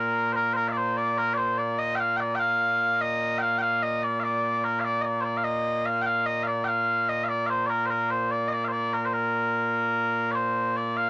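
A 6/8 at 98 beats per minute carries this short cut from a longer piece of Scottish pipe music in Bb major, its mood ceremonial and stirring. A set of small bagpipes plays solo and up front from 0.0 to 11.1 seconds, their tone mellow, sweet and continuous across a range from Bb2 to G5. The recording is dry and gritty, with a cassette-tape character and light reverb.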